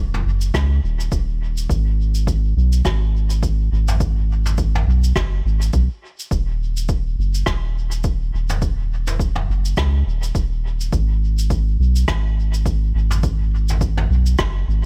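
Ambient dub in G# minor at 104 BPM, hazy and deep, with a 58% swing on the sixteenths in this cut from a longer piece. A round, soft sub bass with a triangle-and-square-wave tone sits up front from the start, ranging from D#1 to C#2 with fast attacks and sustained notes, while a punchy, layered electronic kick re-recorded in a small room enters at 0.5 seconds. Quieter in the mix, a brushed acoustic kit with a mid-forward, rolled-off top plays cabasa, rim clicks and toms through dub echo, all in a fairly dry space.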